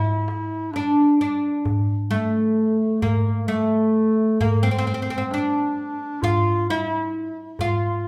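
Longing and soulful, this brief cut from a longer Turkish makam ensemble piece moves in 10/8 at 131 BPM in D makam ussak, tuned to A4 = 438 Hz, with a bright, woody, deep fretless oud carrying the plectrum-plucked melody up front on its double strings, a warm classical-style clarinet tracing a softer second line alongside it, and a close, dry clay-shell darbuka struck with hard hands, all played live in one room and bathed in a wet large-studio reverb as the music shifts into a new section at 1.7 seconds.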